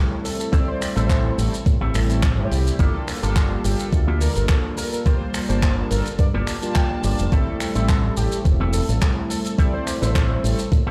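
The recording sounds as though it is played through a big sound system in a bare stone room, with light reverb and a thumpy, sampler-style electronic kick sitting up front. This sleek, cosmic nu-disco cut, taken from a longer piece, moves at 106 BPM in a straight 4/4, tuned to A4 = 444 Hz, and circles from Am7 to Gm9 and back to Am7. Mellow synth brass, round and dark with chorus, tape echo and sidechain pumping, carries the accompaniment, while a bright, twangy electric guitar with an envelope filter picks a compressed riff in the background. A thick, detuned unison lead carries a melody between G4 and D5 through tape echo, and a tight acoustic funk kit adds finger snaps, handclaps, hi-hat and shaker. A fingered electric bass with an envelope filter joins at 1.0 s, direct and pumping, and a clean electric guitar fill appears at 6.2 s.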